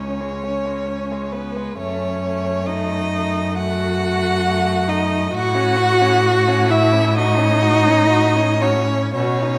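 A string quartet begins together in a serene, slow romantic movement in 4/4 at 57-69 BPM with rubato: a warm, close first violin carries the melody with a soft attack, vibrato and expressive portamento beneath a smooth, even second violin line set up front, while a rich viola with portamento fills the accompaniment and a focused cello with a smooth top anchors the bass, all bowed with vibrato in moderate recital-hall reverb, the harmony settling on D#dim/F# at 1.8 seconds and F#m/A at 5.3 seconds in this brief fragment of a longer piece.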